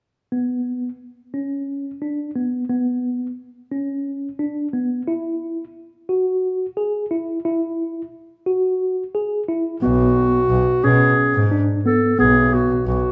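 Contemporary chamber music in 7/8 at 177 BPM (eighths), pensive and hypnotic in B dorian, this excerpt opens with a mellow, clean tine electric piano spinning arpeggios over Bmadd9 and Eadd9 through built-in speakers. At 9.8 seconds a dark, distant clarinet takes up a classical-style solo melody while a bowed double bass enters beneath it, earthy and nasal with light vibrato and an airy bow, as the harmony settles on Bsus2. A moderate recital hall reverb gives the parts a roomy depth.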